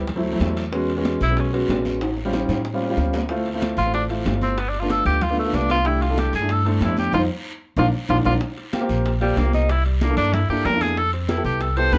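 Afro-Cuban jazz at a lively, danceable 188 BPM in C major, cut from a longer piece, with a dark, mellow grand piano and a woody pizzicato upright bass up front, over very quiet high-tuned congas and tight bongos, ringing metal-shell timbales in the distant background and a raspy, saturated guiro. A clear tenor saxophone with light vibrato and scooped notes takes the solo, playing a brief phrase at 1.2 seconds before entering fully at 3.8 seconds. After an early drum fill at 2.0 seconds, a second drum fill, a band accent and a short piano fill lead into the second section at 8.4 seconds, all in a dark production with light reverb.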